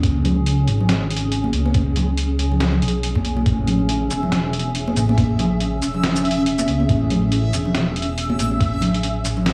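A dark detuned saw bass rumbles up front beneath a blurred granular cloud pad, a gritty, pitched-down sampler kit with a thumpy background kick, and distant congas carrying dub echo, all at a half-time 140 BPM with a 16th-note swing, before a reversed, dreamy texture joins at 3.9 s in this dark, meditative deep dubstep passage built on C#5 shifting to A at 3.5 s.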